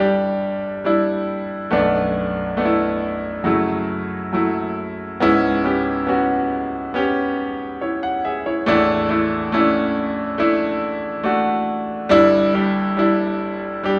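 Longing and emotional, this short pop passage, taken from a longer piece, features a bright grand piano playing alone at a slow 69 BPM in a straight 4/4. The piano sits up front with a brilliant, natural tone, ranging from G1 up to F#5 across the full 14 seconds. The harmony moves through Em7/G, Bm7 and F#m7 before a new section arrives at 5.2 seconds with C#m7, then Asus4, and finally returns to Em7/G at 12.1 seconds. A large studio reverb lends the sound a wet, spacious air, as if the player were captured live in one room. The top end is softened, with nothing heard above 10.5 kHz.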